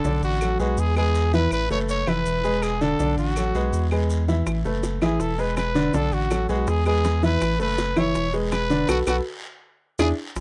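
A danceable, sunny slice of Cuban son and guajira at 163 BPM in a straight 4/4, cut from a longer piece and cycling through Bm7, E, Asus2 and E7 before landing on B5 and E7. Up front, a growling trumpet carries the solo melody with a bright, gritty bite and light vibrato. Beside it, a clear concert grand piano with a worn character and short sustain plays arpeggios. A deep, thick saturated sub bass with a fast attack holds the low end. In the background sit a raspy, distant guiro, grainy maracas and woody claves that arrive at 0.4 seconds, while round, low-tuned bongos played with hard hands join at 4.5 seconds. The dry, close 1970s-style studio sound carries light reverb, and the band hits an accent from 8.9 seconds as a drum fill closes the passage.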